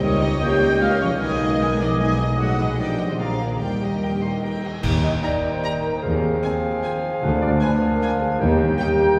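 In a straight 3/4 at 151 BPM, this playful, mischievous film cue in Eb major, cut from a longer piece, sets a rich, expressive chamber violin section on the melody, with second lines from a clear oboe, an airy large flute ensemble, a lush studio violin section in the background and a very quiet, distant clarinet, over a smooth viola section, a warm bassoon and a ringing, fingerpicked harp playing arpeggios beneath dark, punchy French horn chords; a vintage tuba, a focused cello section and a bowed double bass section carry the bass, while a cymbal swell, clash cymbals and concert bass drum sound from 2.4 to 5.6 s, with a band accent at 4.8 s, heard from further back in a wet church reverb.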